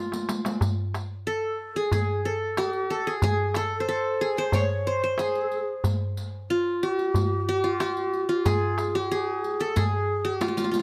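Arabic maqam ensemble, passionate and warm, at 92 BPM in a straight 4/4, where a bright-edged, plectrum-plucked triple-string qanun carries the melody up front over a crisp, close and dry metal-shell darbuka and a distant riq with glittering jingles heard in a large room, both played with soft hands, while a breathy, end-blown reed-cane ney with vibrato enters at 1.3 seconds as an expressive second line in the background, a drum fill opening the passage at 0.0 seconds and another arriving at 10.4 seconds, captured with light reverb and close, detailed microphones.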